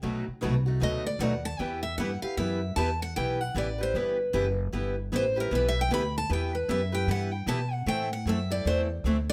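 A moderate studio reverb gives this short cut from a longer acoustic string swing piece a close, roomy sound, with a woody, thumpy pizzicato upright bass on gut strings sitting up front alongside two bright, picked steel-string guitars playing the accompaniment, also up front: one a concert guitar with finger squeak, the other a boxy parlour guitar. From 0.8 s a third guitar, a boxy parlour instrument placed in the background, carries a virtuosic, bittersweet solo melody with audible finger squeak. The swung harmony moves from B7#9 to E minor at 1.6 s and on to A minor at 7.9 s.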